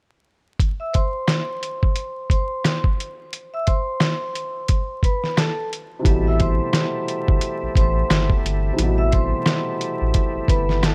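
Gritty, compressed sampler drums with a thumpy kick and medium-tuned snare open this moody, tough boom-bap hip-hop excerpt at 88 BPM in A minor, joined at 0.8 seconds by a ringing, metallic vibraphone melody with digital delay. A dark woody upright piano arrives at 6.0 seconds, followed at 6.1 seconds by a deep sine-like sub bass and a lightly overdriven tonewheel organ with key click on an Am7 chord, all steeped in vinyl crackle and a dry sound.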